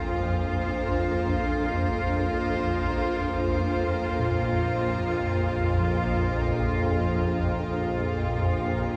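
A swarming drone sits up front in this dark ambient piece, its detuned, granular sine tones holding low unison notes from Bb1 to F2 with slow attack, long release and a moving notch that keeps the sound tense and evolving inside its own built-in reverb. Beside it, a rich chamber cello section, also up front, sustains bowed chords between Bb3 and C5, its earthy ensemble tone carrying light vibrato. Both parts play throughout the 9 seconds in free time over a Bb5 chord. At 4.2 seconds a bronze singing bowl enters with soft felt-mallet arpeggios, its metallic ringing showing slow beating and a mellow, meditative character in a boxy small room. The mix is echo-heavy, washed in a wet echo chamber reverb with a 2.4 second decay, and the mood is desolate and ominous.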